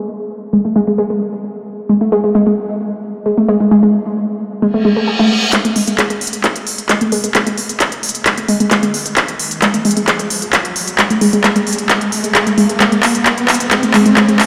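A straight 4/4 pulse at 132 BPM drives this relentless, hypnotic peak-time techno cut from a longer piece, opening at 0.5 s on an up-front, warbly and dusty pluck riff with lo-fi ring-modulated grit, subtle chorus, digital delay, sidechain pumping and a filter sweep. A reverse cymbal and riser arrive at 4.8 s, and at 5.5 s a heavy, high-passed kick settles into the background beneath a forward techno kit of handclaps and smooth, low-passed, pumping hats as a drum fill and riser carry the build-up. The whole mix sits in a huge, wet ambient reverb, like a big sound system in a bare room.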